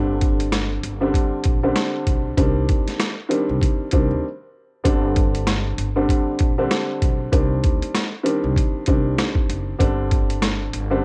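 Boom-bap hip-hop in C minor at 97 BPM with a swung 16th feel, this reflective, dark excerpt pairs a mellow, intimate upright piano, filtered and tape-worn, with audible action noise, against a pizzicato upright bass with a woody tone and a gritty, pitched-down sampler drum kit of thumpy kick, high-tuned snare, rim click and hi-hat, all set in a small home-room cassette ambience, with a brief break at 4.2 seconds as the chords move between Gsus4 and Cmadd9.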